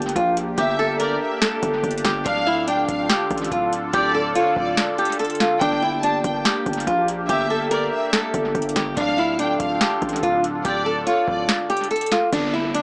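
Drenched in echo and spring reverb with a small-speaker sound, this menacing, eerie half-time trap excerpt opens on an electronic impact, as a bright, boxy fingerpicked flamenco guitar carries the melody up front over a booming, overdriven analog drum machine with a deep kick, crisp snare and metallic hats. A detuned sawtooth pad holds resonant, evolving chords beneath, while a distorted, aggressive 808-style bass adds heavy saturated weight. A lush, distant bowed violin section enters at 0.6 seconds with a rich, vibrato-laden second line, the kick drops out briefly at 4.8 seconds, and a downlifter closes the passage.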